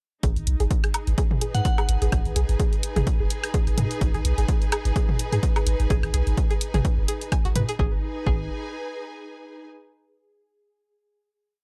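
A four-on-the-floor kick, punchy and up front, drives this sparse, cool minimal techno piece at 127 BPM in G# minor, with a 56% swing on the sixteenths giving the programmed closed hats and backbeat a loose shuffle. Underneath, a deep sine sub bass with a pitch-drop attack rolls through a staccato groove, pumping with the sidechain, while electronic woodblocks and a mid tom scatter clicks and blips in cross rhythm. A twangy, string-like resonator pluck repeats a five-step loop that drifts against the bar, its bright sawtooth tone run through chorus, phaser, cassette tape and analog delay as a filter sweep works on it from 0.2 to 7.8 seconds. A clear symphonic string section adds lush, slowly shifting bowed chords with vibrato, and a very quiet swarming drone holds a high G#4 with granular, wave-folded grain, while a crystalline FM bell offers a brief answering phrase around 1.5 seconds. 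The dry, gritty hardware sound keeps things close and tape-tinged, and after the groove ends at 7.8 seconds the strings ring on through a final chord to 9.6 seconds.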